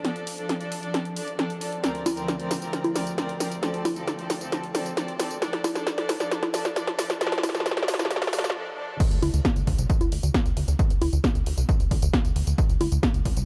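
Uplifting trance in a soaring, emotional mood, this excerpt opens with a clear, bowed studio string section holding sustained chords that pump with sidechain, while an overdriven analog drum machine, with its dry, punchy snare, congas, hi-hat, tambourine and crash, plays a fill across the build-up. After a brief break at 8.6 seconds, the drop lands at 9.0 seconds, where the strings give way to a layered, tape-tinged electronic kick and a dark, funky sawtooth bass with a fast attack, a filter pluck and its own sidechain pumping. The up-front mix sits in light reverb and is trimmed by a high-pass filter.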